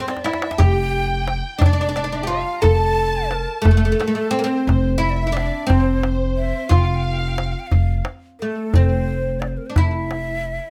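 A tight, close and dry tombak plays a drum fill in the first 0.6 seconds of this passionate, stately Persian modal fragment in F dastgah mahur, set in 6/8 at 59 BPM, as a woody, fretless oud carries the melody up front with slapback echo, a breathy, end-blown ney and a lush bowed violin section share a second line (the ney with plate reverb and vibrato, the violins stopping at 8.1 seconds), and a thumpy pizzicato upright bass holds a low F, all in a rough home demo mix with light reverb.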